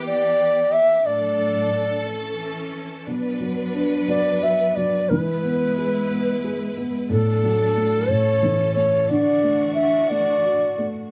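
A bass bansuri leads this sleepy, tender children's lullaby in D major. Its reedy, airy bamboo tone sits up front with lifted highs, vibrato and tongued notes as it carries the melody from the start until 10.9 seconds. Beneath it, a studio string section holds lush, bowed chords throughout, focused and close with its own vibrato. At 3.1 seconds a felt-muted upright piano joins with soft, dark, intimate accompaniment, its thick felt lending a mellow cushion near the front. The tempo sits at 60 BPM in a rubato 6/8, moving through chords such as Em, Bm and E before settling on Dadd9. The band plays live together in a small room with moderate reverb, and the passage is cut from a longer piece.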